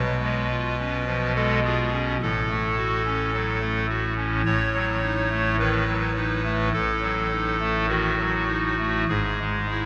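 Solemn and grave, this short classical excerpt is a chorale-style piece for solo pipe organ at a slow 53 BPM in 4/4, moving with a rubato feel. The organ speaks through a hollow clarinet reed stop with baroque voicing, audible chiff and a tremulant, sitting up front and spanning G#1 to C#5 across the full 9.9 seconds. Chords pass from C#7/B through F#m/A and D#m7b5/A to a rootless C#m/G# at 9.1 seconds, all bathed in a wet church reverb with a 2.7-second decay.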